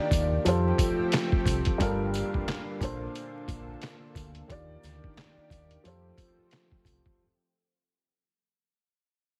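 A dark, woody upright piano and a lush, warbling unison pad open this moody boom-bap hip-hop excerpt at 89 BPM with a 16th-note swing, joined from 0.1 seconds by a round, amped dub bass, a gritty, pitched-down sampler-style kit with thumpy kick and handclaps up front, and jingly sleigh bells in the background, all moving through Fadd9, Gm7, Bbmaj7 and Ebmaj7 under a fade-out, with cassette-tape haze on the piano, vinyl crackle and a compressed radio-like sound.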